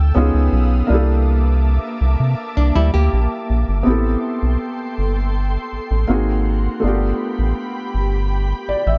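A rubbery, hollow square-wave bass sits up front in this short contemporary R&B excerpt, its bouncy, nasal tone carrying the low end throughout at 81 BPM in A minor. A soft, felt-muted upright piano provides intimate accompaniment, while an ethereal pad with ensemble chorus and built-in reverb holds airy, warbling sustained chords behind it. A nylon-string guitar briefly adds fingerpicked classical arpeggios between 2.6 and 3.8 seconds. After the opening section, the music moves into a new passage at 3.9 seconds, settling on an Am9 chord, and the piano closes with a short fill from 8.3 seconds. The mood is longing and sensual, framed by a dark production and small room ambience.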